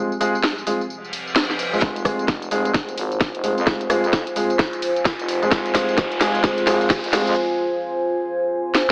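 Heard through an AM radio sound and a moderate digital room reverb, this short cut from a longer bass house track sits at 130 BPM in F minor, with a bouncy, swaggering 16th-note swing over a single Fm chord. A deep, moody analog pad built from sawtooth and triangle tones with a sub octave holds slow-attack chords through chorus and phaser, pumping against the sidechain, while a dark, mellow grand piano plays up-front stabs roughened by vintage 12-bit sampler grit, a low-pass filter and tape echo. A garage drum kit sets the groove from the start with a cracking snare, warm hi-hats, rim clicks and tambourine, and an electronic reverse cymbal sweeps in at 1.0 seconds to lead into the next section. At 1.8 seconds a tight, layered electronic kick drum lands up front alongside a growling, thick FM bass that sits in the background with overdrive, a high-pass filter and sidechain pumping, as a riser and drum fills drive the build-up. 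The piano drops out at 7.3 seconds, and the riser and fills fall away at 7.4 seconds into a short break carried by the pad and garage kit.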